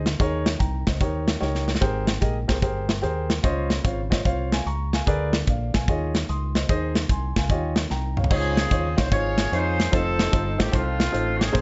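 A roomy, distant horn section with slapback echo takes up the melody at 8.3 s in this hopeful, reverent slice of uptempo swung gospel, over an intimate grand piano with audible action noise, a round, punchy fingered electric bass and a polished, airy acoustic drum kit with a tight kick that plays fills at 1.4 s and 7.9 s, all in light reverb.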